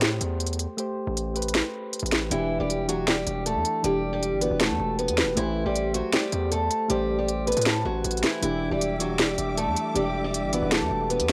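Brooding and melancholic, this half-time trap hip hop excerpt opens on a short break of mellow, chorus-tinged electric-piano-like synth keys, a heavy distorted 808-style bass and a tape-softened trap kit of finger snaps, crisp hi-hats and a sharp snare. At 2.3 s a bright, boxy picked acoustic archtop guitar with audible finger squeaks takes the melody up front, and from 8.4 s a lush bowed string section adds sustained chords, all captured as a small-room home recording on cassette.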